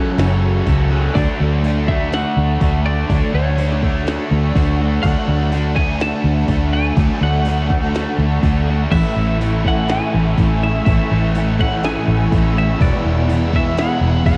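Shoegaze and dream pop rock at 124 BPM in a straight 4/4, this excerpt from a longer piece feels wistful and blissful, moving from F#madd9 through Dmaj7 and Amaj7 to Eadd9. A bright twelve-string electric guitar carries the melody with a compressed, twangy edge, colored by cassette tape and analog delay. Beneath it sits a wall of riffing guitars: a warm, crunchy overdriven part with reverse reverb, a biting double-tracked one with phaser, and a dark fuzz guitar thickened by distortion and ensemble chorus, the latter two set back in the mix. A very quiet clean guitar, recorded direct, picks bright arpeggios, while an evolving wavetable pad warbles and morphs in the background with phaser and its own reverb. From 0.2 seconds a round, punchy foam-muted fingered bass sits up front, and a glitchy electronic drum kit joins with a deep kick, tiny snare, clicky hats and crash, re-recorded in a large room. 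The whole has the dry, saturated character of a home recording on cassette.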